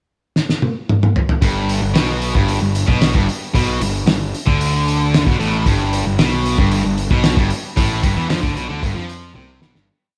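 A cloth-damped, thuddy drum kit opens this sunny, swaggering classic rock piece with a fill at 0.4 s, its fat snare and tight kick muffled and up front, before a single-note riff in G major kicks in at 1.4 s at 114 BPM, carried by a bright overdriven guitar with slapback echo, a biting guitar in the background and a punchy fuzz bass doubling the riff in a syncopated line, all in a small room sound that fades out from 7.8 s.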